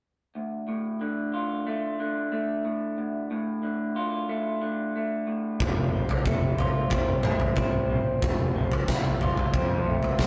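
Quiet-loud alternative rock in D minor at 92 BPM, this short excerpt from a longer piece feels dark and cathartic. An electric guitar through a small old amp opens alone at 0.4 seconds with picked arpeggios, its tone bright, twangy and slightly broken-up, lo-fi and up front with a touch of spring reverb. At 5.6 seconds the harmony moves from D minor to F as a huge arena drum kit and a fuzz picked electric bass enter together. The drums sit up front with a punchy kick, a medium-tuned snare and toms in a hall-like space, while the overdriven bass stays in the background, bright, fuzzy and direct. The whole take has the rough, lightly reverberant character of a rehearsal-room recording.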